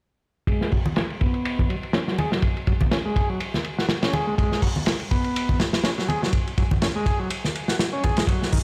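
A reedy vintage combo organ riff in G# minor pentatonic, soaked in spring reverb and dub echo under a filter sweep, opens at 0.5 s alongside a crunchy, dark, up-front breakbeat kit with a punchy kick and muffled cymbals, joined at 0.9 s by ringing, close congas struck with hard hands, all driving a gritty, swaggering breaks groove at 123 BPM with a 56% sixteenth-note swing that booms as if played through a big sound system in a bare stone room.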